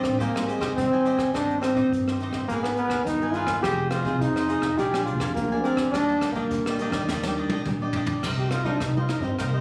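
Samba and choro with a yearning, bittersweet mood: an up-front, forceful trombone carries the melody with scooped notes, over a crisp, picked cavaquinho, a full-bodied, fingerpicked nylon-string guitar and a woody, thumpy pizzicato upright bass on gut strings. A dark, smooth brush drum kit with a punchy kick and high-tuned snare plays a fill from 7.1 seconds, and the trombone breaks into a solo at 8.2 seconds as the harmony shifts. The sound has light reverb and compression and was recorded on a phone in the room, and this is a short cut from a longer piece.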